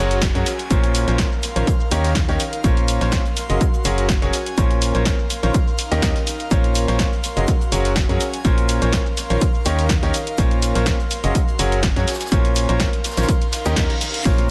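A lightly swung groove drives this soulful, bittersweet piano house excerpt, with a punchy, tape-warm electronic kick sitting up front and an analog drum machine adding hi-hat, shaker and a punchy snare, all carrying the character of a large room. Beneath them, a natural-sounding jazz brush kit with a medium-tuned snare murmurs in the background, its hats, snare and percussion high-pass filtered, with the hats and percussion pumping along with the sidechain. A brilliant, polished grand piano carries the riff with long sustain, audible action noise and a digital delay, cycling through Gbadd9, Bbmadd9 and Eb7 changes. It rides over a hollow, percussive, organ-like FM bass with a fast attack and dark decay, both breathing with the same sidechain pumping. An airy, breathy pad with detuned sawtooth and triangle layers, a noise component and chorus hovers softly behind, and an electronic downlifter opens the passage before a reverse cymbal rises from 13.5 seconds. 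Gentle tambourine and congas slip in only at 14.2 seconds as the clip cuts off, all set in a small room ambience.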